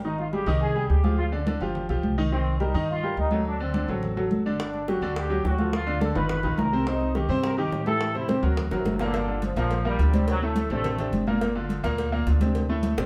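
Fiery and danceable, this salsa excerpt at 211 BPM in G minor puts a tight, vintage trombone section on the melody over a clear, up-front baby grand piano with short sustain, a dark, woody pizzicato upright bass and soft-handed, thick-skinned congas in the background; tight, high-tuned bongos and cowbell join at 4.6 seconds, a drum fill at 8.7 seconds leads into the closing section, and the trombones drop out at 11.1 seconds, with the whole band heard from further back in a wet studio reverb.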